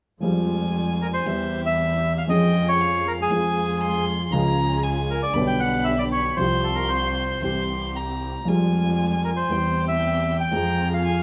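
A wet studio reverb with a short decay wraps this tense, melancholic tango, a brief passage cut from a longer piece and played with a rubato feel. Up front, a reedy, band-limited bandoneon with a vintage character carries the melody, entering at 1.0 s, while a bright, intense violin with light vibrato adds a bowed second line high above it. A dark, mellow grand piano with short sustain supplies the accompaniment, reaching down into its low register. Beneath it, a clear, earthy double bass is bowed with light vibrato and sits at a distance, and a dark studio string section adds expressive stabs in the background, shaded with vibrato and portamento. The harmony moves through chords such as Fmadd9, Db/F, G/B and Csus4 before settling back on Fm at 10.5 s.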